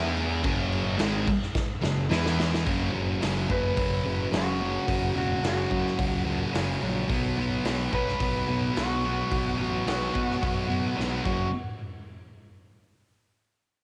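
A thick, bright, double-tracked fuzz guitar riff and a growling, overdriven picked bass open this menacing, swaggering garage rock excerpt at 108 BPM in a straight 4/4, with a gritty, saturated, up-front drum kit in a pumping stone room arriving at 0.2 seconds and throwing in a fill at 1.6 seconds. The riff moves through F#5, E5 and B5 power chords, and at 3.5 seconds a clean, twangy lap steel enters with slide and volume swells, carrying the melody through tape echo. The whole piece has the raw, lightly reverberant feel of a home recording on cassette, stopping after another drum fill near 11.5 seconds.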